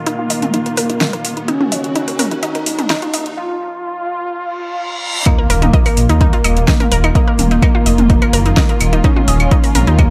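An echo-soaked, lightly reverberant mix opens this melancholic, hypnotic melodic techno passage at 127 BPM in Eb minor, where a thick, nasal unison lead with vibrato and dub echo carries the melody over dark, woody strings held in the background and a deep, rumbling detuned saw bass with tube saturation, all pumping against the sidechain. A lush unison pluck arpeggio with its own dub echo and an overdriven deep house kit of claves, metallic hats, fat snare and toms drive a filter-swept build-up that breaks at 3.4 seconds, while a background riser and reverse cymbal lead into an impact. At 5.3 seconds the drop arrives as a punchy, up-front overdriven electronic kick joins.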